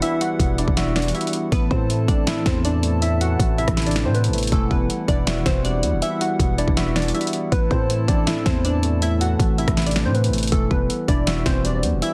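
A glassy, detuned wavetable pluck carries the melody over a bright, clean tine electric piano and a hollow, flute-like pad in the background, with a punchy, gritty pop drum kit up front, all setting a dark, brooding trap groove at 160 BPM in half-time E minor. A growling, buzzy 808-style bass joins at 0.4 seconds, and the harmony alternates between Emadd9 and Am. The soft pad drops out at 10.5 seconds, and the dry, dense and heavily limited mix ends abruptly, cut from a longer piece.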